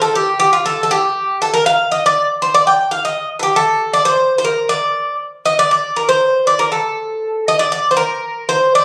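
A solo acoustic Greek bouzouki carries this short fragment of Greek folk music, its picked double strings ringing bright and metallic, with some octave-doubled courses adding shimmer as it sits up front in a cool, moody two-beat feel. The melody moves between F4 and G5 and shifts to a new phrase at 5.7 seconds before the clip cuts off at 8.8 seconds. Captured on a phone in the room, the sound carries a moderate club-like reverb that lends a live, intimate air.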